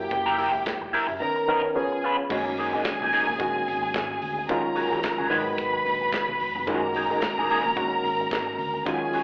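A bowed violin section, an electric guitar, a reed electric piano and a fingered electric bass open this driving, danceable disco passage together, with a modern drum kit joining at 0.1 seconds. The violins carry a second line up front, their focused ensemble tone showing vibrato and a smooth top. Alongside them, the electric guitar sits up front at the edge of break-up, its warm, fingered playing shaped by wah and a slapback echo. The reedy electric piano pulses with a fast tremolo through its built-in speakers, and the hollow-body bass stays dark and round beneath the drums' tight kick, medium-tuned snare, hi-hat, handclaps and crash cymbal. Lush jazz-inflected chords such as Gb7b9, Bmaj9, Ebm11 and Gb69 move over a lightly swung sixteenth-note feel, with a new section arriving at 2.3 seconds. The whole passage is heard as a live gig through a venue's PA, carrying club reverb and a thin, telephone-like sound as it plays on from a longer piece.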